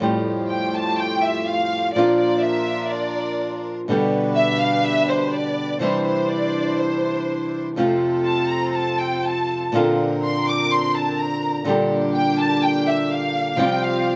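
A lush, expressive violin section takes a solo from 0.5 s with bowed, vibrato-laden lines over fingerpicked acoustic flamenco guitar and earthy, nasal chamber string stabs touched by slapback echo, in a tense, sultry tango excerpt in F major at 124 BPM with a rubato feel, a dry open-air sound and chords moving from Fadd9 through Bb and Cadd9 to a closing Csus4.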